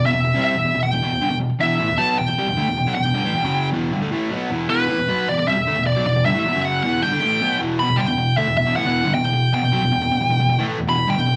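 A bluesy, distorted lead guitar sits up front, carrying the melody between B4 and B5 across this driving, heavy rock fragment in E minor at 155 BPM. Beneath it, a crunchy, double-tracked rhythm guitar picks a low riff over an E minor chord, both parts playing throughout, with the arrangement moving into a new section at 7.8 seconds. The band sounds as if it was recorded together in one large studio, with a generous, wet reverb around the warm overdriven tones.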